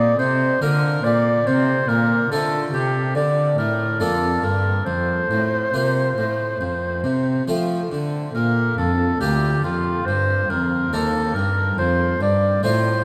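Radiant and dance-like, this baroque-style sonata excerpt sets a mellow, vibrato-tinged oboe melody up front over a brilliant, close-miked harpsichord continuo and a gut-toned bowed cello bass, all three playing throughout the 13 seconds and bathed in a vast cathedral reverb.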